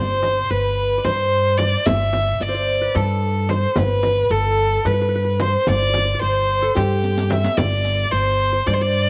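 A rich, focused violin leads this stately, passionate Turkish makam ensemble piece, its single bowed voice sitting up front with vibrato and a smooth top as it carries the melody in makam rast on G. The tempo runs at 220 BPM in eighths, in a straight-feeling 7/8, and the recording is cut from a longer piece. A plucked qanun, bright-edged with the shimmer of triple strings, plays a second line in the same register as the violin, while a woody pizzicato upright bass on steel strings holds the low end up front. A warm, close frame drum played with soft hands and a riq with dark jingles set back in the background supply the percussion, entering at 0.2 s, and the drum takes a fill from 7.0 to 7.6 s. The ensemble sits in a moderate echo chamber reverb that gives the room a sense of space around the players.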